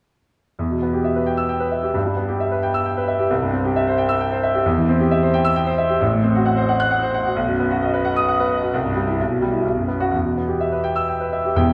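A clear concert grand piano opens the recording at 0.6 seconds, playing alone through this short, stormy excerpt of a virtuoso classical piano study in E minor. The mood is agitated, set in 3/4 at 132 BPM with a rubato feel that lets the time stretch and press forward. The piano sits up front with a deep bass and long sustain, ranging from E1 up to F#6, and its open tone rings into a wet concert hall reverb with a two-second decay. The harmony moves from E minor through C and a diminished chord toward B, then returns to E minor near 10.1 seconds before the piano stops at 11.7 seconds.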